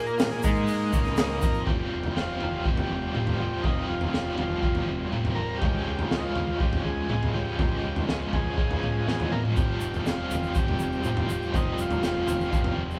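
Trippy and mysterious, this psychedelic rock excerpt opens with a buzzy, vintage combo organ soloing over the first 1.7 seconds before it carries the melody, set against a bright, double-tracked overdriven semi-hollow guitar riff with tremolo, a gritty, punchy breakbeat drum kit with a high-tuned snare, a round fuzz bass in the background, soft flute-like sustained chords from a very quiet percussive tonewheel organ with key click and slow rotary speaker, and a grainy tube shaker that returns at 9.6 seconds, all captured as a band playing live in one large studio room.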